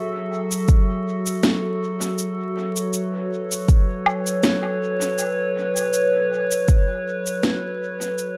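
A slow 80 BPM groove in 4/4 with a 55% swing on the sixteenths sets an unhurried, swaying pulse for this deep, meditative ambient dub excerpt. A deep, layered electronic kick drum arrives at 0.7 s and sits up front with a tape-warm weight, while an electronic cabasa, woody snare and woodblock carry the overdrive, dub echo and the character of being re-recorded in a small room. Alongside them, a dark, warbling pad built from square, triangle and sine waves folds into lo-fi, nostalgic sustained chords, with a slow attack, long release, chorus and its own reverb. The harmony moves from F#m7 to Aadd9/F#, and the echo-heavy mix carries light reverb and a bed of vinyl crackle. The piece begins fading at 6.2 s, and the kick drops out at 6.8 s as the pad and percussion carry on toward the end.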